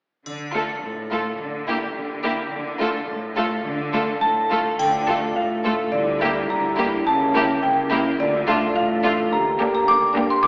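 Mischievous and magical, this playful, whimsical film cue in D minor moves at 106 BPM in a straight 2/4, cut from a longer piece, with a concert harp ringing softly in the background under bowed string sections: a bright, intense violin melody, a smooth second violin line, a background viola accompaniment and a clear cello bass, all touched with vibrato, while a close, dry triangle sparkles at the start and again at 4.8 s. At 4.2 s a woody, sharp xylophone with plastic mallets joins the melody up front, and from 4.8 s a mellow French horn section holds sustained chords over a lush double bass section in the background as the harmony darkens through Em7b5/D and C#dim7. The whole cue sits far back in a wet concert hall with a 2.2 s reverb and a thin AM-radio colour.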